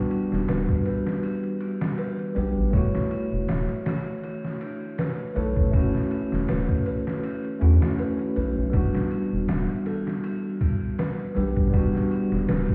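Melancholic and smoky, this trip hop excerpt moves at 80 BPM in 4/4 with a light swing on the sixteenths, set in E dorian and drifting from Em7 to Dmaj9 at 2.7 seconds before settling back on Em7 at 8.7 seconds. A bell-like tine electric piano carries the accompaniment up front, its clean, direct tone colored by tremolo and tape echo, while a delicate music box tinkles arpeggios, plucked and close-miked, also passing through tape echo. The sampler-style drum kit enters at 0.1 seconds with a thumpy kick, medium-tuned snare and ride cymbal, pitched down, compressed and gritty with overdrive. A round analog bass joins at 0.3 seconds, deep and evolving, blending square and sine tones with a wave-folded edge, fast attack and sustained, mellow notes. The whole mix sounds muffled as if heard through a wall, wrapped in a stone room reverb and a bed of vinyl crackle.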